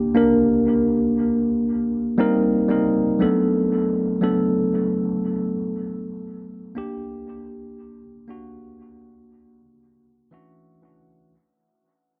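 Romantic and dreamy, this slow R&B fragment at 59 BPM in 4/4 features a lone tine electric piano, mellow and a little worn, slightly out of tune, and sitting up front, moving through Gm, Eb6 and D6 before returning to Gm and landing on Dmaj9. Dub echo trails the keys, and a moderate plate reverb fills the echo-heavy mix. The piece fades out across its length, with a short electric piano fill from 9.8 to 11.3 seconds.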